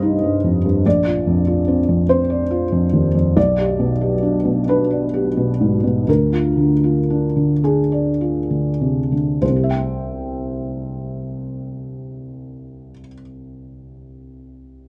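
In a slow, rubato 6/8 that holds back further between 2.1 and 9.4 seconds, this reflective, melancholic classical fragment, cut from a longer piece, sets a felt-muted upright piano in a dry, close and detailed space, its dark, intimate tone carrying audible action noise as it moves from C minor through Bbadd9, G/B and D diminished before settling on C major at 9.4 seconds.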